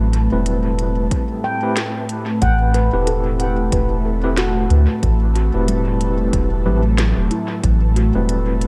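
A round, deep dub sub bass sits up front in this spacious, meditative ambient dub excerpt, which moves at 92 BPM in 4/4 with a 16th-note swing and rests in A dorian over a single Am7 chord. Around it, a breathy pad treated with chorus and phaser sustains airy chords. A handpan of nitrided steel, played with soft fingertips, rings out mellow, dark arpeggios trailed by tape echo. From 0.3 seconds an overdriven tine electric piano adds gritty stabs through a combo amp, shimmering with fast tremolo and dub echo. An organic electronic kit brings a woody snare and crisp hats in a large room with dub echo, joined at 1.1 seconds by a layered, tape-warm electronic kick that stays in the background and drops out at 7.8 seconds. The fragment floats in an echo-heavy digital ambience, tuned slightly low at A4 = 438 Hz.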